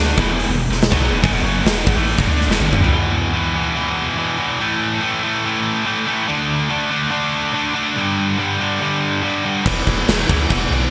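A scooped, high-gain electric guitar dominates this menacing, driving hard rock passage, its bright, double-tracked, picked riff sitting up front with heavy distortion throughout. The track moves at 142 BPM in a straight 4/4 in E minor. A punchy sub bass with a deep, sine-like tone and a pitch-drop attack joins the guitar at the start, and a huge acoustic arena drum kit enters just after at 0.2 seconds with a punchy kick, a medium-tuned snare, bright cymbals and toms, all soaked in gated reverb. After a drum fill at 2.5 seconds, bass and drums drop out at 2.9 seconds, leaving the guitar alone to move through E5, A5, D5 and G5. Bass and drums return at 9.7 seconds as the riff lands back on E5. The bright, 1980s-style digital production wraps the whole mix in a lush hall reverb.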